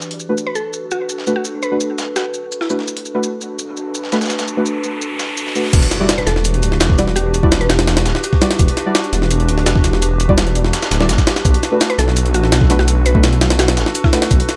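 A dark detuned saw bass, deep, rumbling and saturated, arrives up front at 5.7 seconds alongside a gritty, pitched-up jungle sampler-style drum kit with a thumpy kick, high-tuned snare and crash, driving this dark, atmospheric drum and bass excerpt at 168 BPM in E minor. Before the drop, a warbly, nostalgic tape-like pad with a filter sweep holds sustained chords over an overdriven, dusty soul sampler-style kit of hi-hat, shaker and snare, while a riser and impact mark the arrival. Soft, deep chord stabs run throughout, and a woody, round mallet-like synth pluck melody enters in intermittent phrases; both carry chorus and dub echo over Bm7 and Em9 harmony in a digital ambience.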